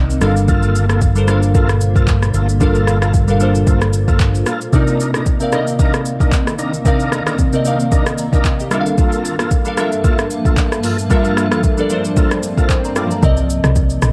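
Amapiano at 113 BPM in C dorian with a late-night, soulful mood, built on an overdriven smooth R&B drum kit of kick, handclaps, hi-hat, rim click and shaker, glassy digital keys up front with chorus over a cloudy granular pad that pumps in the background, and thick tonewheel organ stabs with slow rotary speaker and delay, as a round fingered electric bass plays until 4.4 s, an electronic swell enters at 12.3 s and a woody, punchy log drum bass takes over at 13.2 s on the return to Cm9 after chords moving between Gm9 and Cm9, all in a dark production with light reverb.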